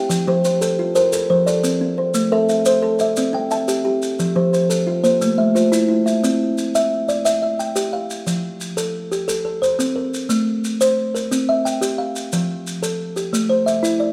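Southern African traditional music in an mbira-style interlocking cycle, this rippling, hypnotic passage is cut from a longer piece and moves at 118 BPM in a straight 12/8, centred on C mixolydian with tuning at A4 = 441 Hz. Two kalimbas carry the arpeggios up front, both woody with a hollow-box body and a soft fingertip pluck. The first has short, mellow notes and plays from the start until 6.6 seconds, while the second rings on and carries the cycle through to 14.1 seconds. Maracas sit well behind them, grainy and acoustic with a live-room quality, shaking through nearly the whole recording. The harmony turns through F, Am and C, with the chords changing more slowly after the second section begins at 6.2 seconds, and a moderate recital-hall reverb gives the whole a gentle, spacious glow.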